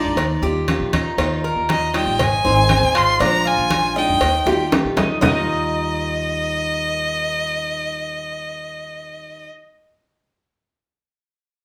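Recorded as a band playing live in one room, this excerpt sits in a wet large-studio reverb. It is a warm, danceable piece of Cuban son and guajira in a straight four, cut from a longer performance. A clear, focused bowed violin carries the melody up front with vibrato, while a bright, metallic tres spins arpeggios on its double strings and a picked steel-string acoustic guitar fills in the accompaniment beneath. An upright bass, woody, dark and thumpy, anchors the bottom with pizzicato notes through the chords Ebadd9, Ab and Bb7. Congas with a bright, thin, low-tuned skin sit close but in the background, and compressed, saturated cowbell and bongos played with soft hands enter alongside them, both coming in at 0.2 seconds. The percussion closes with a drum fill from 4.5 to 5.2 seconds and drops out at 5.3 seconds, leaving the strings to carry on to the end.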